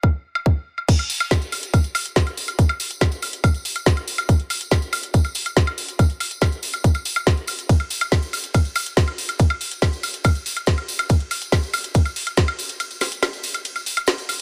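This is a dry, up-front trance excerpt at 141 BPM in a straight 4/4, intense and psychedelic in mood, cut from a longer piece. A tight, layered electronic kick drum drives the track from the start and drops out at 12.5 seconds, just before a break that runs from 12.8 seconds to the end. Alongside it, a drum and bass drum kit of crash, hi-hat, ride, snare and woodblock plays throughout, its snare woody and its hats metallic, both sounding produced and re-recorded in a small room. A jingly, acoustic tambourine enters at 0.9 seconds, close and sitting in the background, as the drop begins. With only drums and percussion in play, the energy rests on the tight kick and the metallic cymbal work until the kick falls away for the break.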